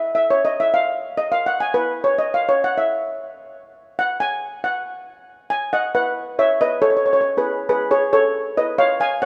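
A lone steel pan opens this short calypso fragment, its metallic, shimmering lead line struck with hard rubber sticks and placed up front in the mix. The mood is carefree and sunny, moving at a brisk 137 BPM in a straight 4/4, with the instrument tuned to A4 = 439 Hz. The pan plays entirely by itself through the first 6.1 seconds, ranging between G#4 and G#5, first over an unharmonized stretch and then settling onto a B chord. From there the passage shifts into a new section built on G#madd11 and then C#, carrying on to the close at 9.3 seconds. The pan has a boxy, small-room character, wrapped in a moderate plate reverb with a 3.4-second tail that lends the warm tone some gentle bloom.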